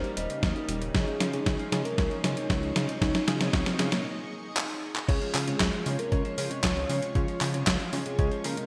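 Melodramatic and nostalgic, this italo disco excerpt moves at 116 BPM in a straight 4/4, set in a lush hall reverb with bright 1980s-style digital production. A soft, round, octave-layered synth lead carries the melody with vibrato, chorus, phaser and delay, while a string machine's full, vintage ensemble holds sustained chords in the background under a filter sweep that runs until 5.1 seconds. A clean, direct-recorded electric guitar picks arpeggios through analog chorus and delay, and a worn, slightly out-of-tune tine electric piano adds mellow, low-pass-filtered stabs behind it. A glossy, chorused synth bass with a fast pluck anchors the low end, and an up-front 12-bit drum machine with gated reverb brings crash, handclaps, hi-hat and a medium-tuned snare. The chords move from Eb to Dbsus2 early on, and a gritty, thumpy electronic kick joins at 0.4 seconds. After drum fills and a break from 4.0 to 5.1 seconds, the music moves into a new section.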